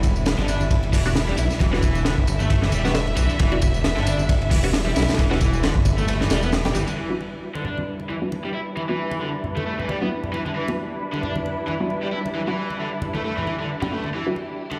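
A swung 134 BPM breakbeat groove in E minor drives this swaggering, funky excerpt, where a crunchy, punchy drum kit, a background tambourine and a menacing detuned saw bass hold the first seven seconds (the kick dropping out from 6.1 s) while bright, hard-handed congas, a lush bowed string section with vintage sampler grit and sidechain pumping under a filter sweep from 7.0 s, an overdriven, double-tracked garage guitar riff with tape echo, and muted, resonant dub chord stabs through phaser and cassette tape carry on over an Em7 in a large, reverberant room.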